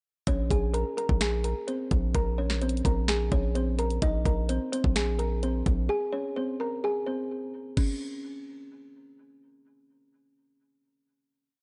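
A half-time trap beat drives this short, eerie and melancholic hip hop piece, with a knocking kick, a sharp snare layered with finger snaps, bright hi-hats in fast rolls and a crash cymbal, while a hard-hitting 808-style bass holds long, punchy sub-bass notes that follow the kick. Over one unchanging chord, a woody, hollow-toned kalimba repeats a looping melody doubled in octaves, filtered like a sampled loop. The bass drops out at 5.9 seconds and the drums at 7.9 seconds, leaving the kalimba alone until 9.1 seconds in a dark digital ambience.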